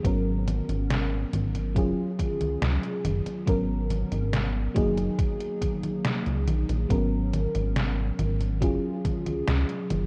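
From the first second, a lush, dreamy FM electric piano with a soft pad layer, coloured by analog chorus and tape echo, sits up front over a glossy, saturated synth bass, while a thumpy electronic kick and a detuned 8-bit drum machine of congas, hi-hat and snare carry vintage sampler grit. Cut from a longer piece, this nostalgic, hazy vaporwave passage moves at 70 BPM in G# dorian, cycling through G#m11, C#add11/F# and F#69, with worn cassette tape adding a warbly pitch drift and little reverb. The kick drops out at 9.2 seconds while the other parts carry on to the cut at 10.1 seconds.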